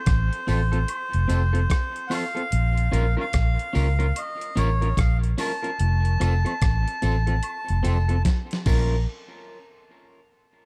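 A swung, laid-back roots reggae groove from a gritty, compressed sampler-style drum kit with a thumpy kick and fat snare, alongside a round, punchy, foam-muted electric bass, both up front, sets a serious mood as a reedy, breathy melodica with tape echo carries the melody over a twangy, slightly broken-up electric guitar that also carries tape echo, with tambourine and woodblock in the background, as the harmony moves between F and B-flat minor before a drum fill at 8.3 seconds, all in a dark, dry production.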